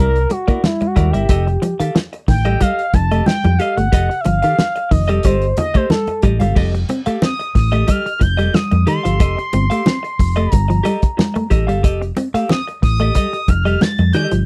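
An energetic funk excerpt opens with a smooth, sawtooth synth lead soloing with soft attack, vibrato and chorus over C9 and F9 chords until 6.6 s, while one clean, compressed semi-hollow guitar picks dark accompaniment with subtle chorus, another adds a warm fingered riff, a round, punchy hollow-body bass sits up front, a tight soul drum kit brings a fat snare, dark cymbals and a pumping room sound, and ringing congas sit in the background of a nearly dry mix.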